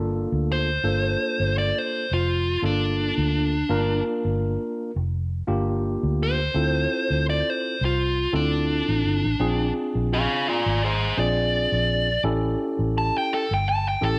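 A dark, smooth overdriven lead guitar carries the melody, entering at 0.5 s and playing a picked solo up front that ranges from D4 to A5. This is a brooding, soulful straight-eighth soul blues at 84 BPM in 4/4, with a light 16th-note swing and tuning set to A4 = 441 Hz. Underneath, a vintage foam-muted fingered electric bass gives a round, punchy, amped low end, while a tine electric piano adds clean accompaniment heard through its built-in speakers. The harmony moves from Gm7 to Dm7, then Bb7, and settles on A7 at 12.2 s. A moderate spring reverb and digital ambience lend the sound a sense of space across this short section cut from a longer piece.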